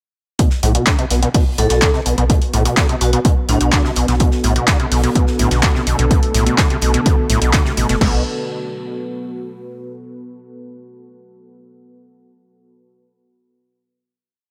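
Hypnotic and driving, this short acid house piece in B minor at 126 BPM rides a punchy, tape-warm analog drum machine with a four-on-the-floor kick, crash, handclaps and programmed hats, over a very quiet, airy acoustic breakbeat loop with edits, while a squelchy, gritty overdriven acid bass line with accents runs under a filter sweep and tape echo beside a round, deep off-beat sub bass, as a metallic vibraphone with hard mallets rings out short phrases through analog delay from 1.6 to 3.7 seconds, a deep, moody ambient pad of slowly shifting chords enters at 2.4 seconds, a smooth detuned pad adds sustained chords in the background, and the piece closes on a final chord from 8.0 to 9.9 seconds.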